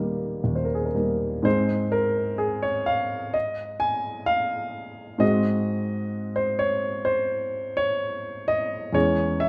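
A baby grand piano, close and natural in tone, carries this romantic character piece alone, unfolding in Ab major at a slow 64 BPM in 4/4 with a supple rubato feel. Its range stretches from a deep Eb1 up to Ab5, and the harmony moves from Eb through Ab and Ab7 before settling on a darker Dbm/Fb near 8.9 seconds. A recital hall's moderate reverb and a dusky, warm production give this short, passionate excerpt an intimate glow.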